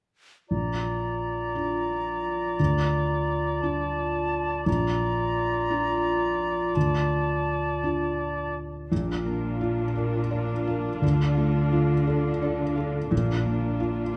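Tender and hopeful, this cinematic, emotional film-score passage for orchestra, cut from a longer piece, moves at a rubato 57 BPM in 6/8, in Bb major with the tuning set to A4 = 437 Hz. From 0.5 seconds a felt-muted upright piano sits up front as the accompaniment, soft, mellow and intimate, its dark, vintage tone carrying audible action noise. Above it, an airy, close-miked concert flute with vibrato and a soft attack, a clear, distant clarinet and a roomy, classical-style oboe with light vibrato hold second lines through the opening section. At 8.9 seconds the woodwinds give way to a smooth, even viola section and a focused cello section on the bass, both bowed with vibrato, while a ringing, fingerpicked concert harp adds arpeggios in the background until 14.2 seconds. The harmony simply alternates between Bb and Dm, and the close, detailed sound is set in a moderate scoring-stage reverb.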